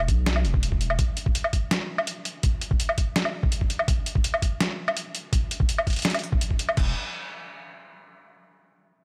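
A deep, saturated sub bass and a gritty, pitched-down boom bap sampler-style kit of crash cymbal, hi-hat, medium-tuned snare and woodblock open this spacious, tense half-time drum and bass excerpt at 166 BPM, with a thumpy, compressed electronic kick entering at 0.1 seconds, both drum parts tape-toned, up front and bathed in studio reverb over a digital ambience until they stop at 6.8 seconds, when the sub bass briefly returns.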